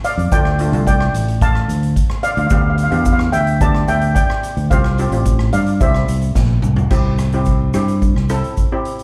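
Heard through a venue's PA with club ambience and little reverb, this festive, carefree calypso clip has a live, close feel. Up front, a lead steel pan played with soft rubber sticks carries the melody with a mellow, shimmering tone and a slapback echo, stopping at 6.6 seconds. Beneath it, a double seconds pan struck with hard rubber sticks gives bright, metallic chordal support, also with slapback echo, over a progression moving from Dm through G/D to Csus4 and C. A fingered electric bass sits prominently with a round, punchy, dark sound. The street-band drum kit is polished and airy, with a boomy kick, medium-tuned snare, dark cymbals, rim clicks and toms, and it plays a fill at 6.4 seconds that leads into a new section at 6.9 seconds. A grainy tube shaker adds a faint, bright texture in the background.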